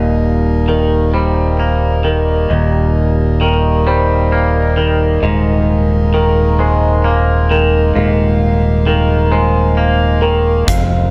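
This slow post-rock passage moves in a straight 6/8 at 44 BPM, counted in dotted quarters, and carries a hopeful, cinematic mood as it is cut from a longer piece. A reedy, breathing hand-pumped harmonium holds sustained chords throughout, close-miked and dry, moving from Eb to Absus2/Eb at 5.2 seconds. Two clean, fingered electric guitars play arpeggios over it: a twangy one up front in the lower register with lush chorus and slapback echo, and a dark, compressed one set in the background higher up with subtle chorus and the same slapback echo. A bright, direct fingered electric bass sits up front on low notes, anchoring the harmony. Only at 10.7 seconds does a huge arena drum kit break in briefly with hi-hat and a punchy kick, all framed by light small-room reverb.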